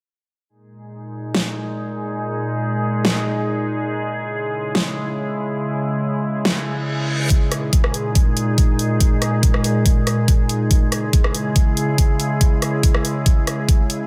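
A morphing wavetable pad opens this short cut from a heavy wobble dubstep track, fading in slowly at 0.8 seconds with mellow, warbling sustained chords that carry chorus, built-in reverb and a sidechain pumping feel. The mood is menacing and aggressive, set at 141 BPM in a half-time 4/4 feel, with the harmony moving between G#sus2 and C#m. Overdriven, up-front drums join at 1.3 seconds, pairing a huge snare with bright hats and a rim click, re-recorded in a small room. A reverse cymbal rises into the second section, where an electronic kick with a knocking, overdriven punch arrives at 7.3 seconds and sits prominently in front of the mix. From there the music builds to the end of the clip, the vintage sine-toned pad still drifting alongside the drums in a light reverb.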